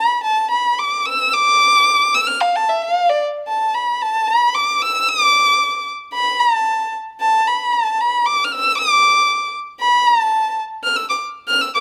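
Indian classical music in raga Shivaranjani on D, this meditative, longing fragment moves in 7/4 at 114 BPM and gathers pace across its 11.8 seconds. A single bowed violin plays solo throughout, its dark tone and smooth top carrying expressive vibrato and portamento as it ranges from D5 up to F6. Close, detailed miking keeps the violin up front, with a light touch of reverb around it.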